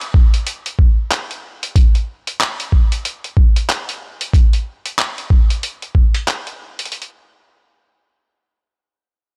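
Playful and swaggering, this short glitch hop cut from a longer piece rides a swung sixteenth-note feel in 4/4. A boom bap sampler-style drum kit carries handclaps and hi-hat from the start to 7.1 seconds, sitting lower in the balance than the kick. An electronic kick drum enters at 0.1 seconds and stops at 6.1 seconds, its thumpy, pitched-down hits sitting up front and clearly louder than the kit. Both drum parts are compressed, tape-warm and gritty, with the roomy grain of a re-recording in a small space. The overall sound is dry and raw, with transformer saturation giving the hardware-style recording a coarse edge.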